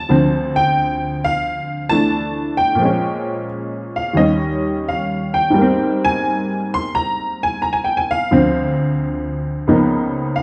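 A detuned, jangly honky-tonk upright piano plays alone throughout this short, relaxed solo jazz passage cut from a longer piece, moving with a loose swing and a rubato feel. Its bright, vintage tone with short sustain sits up front, while a wet studio reverb places the performance further back in the room. The harmony drifts from Dm7 through Bbm7 and Eb7 to a lingering Abmaj9 at 5.6 seconds, then returns to Dm7 and settles on a rich Db13.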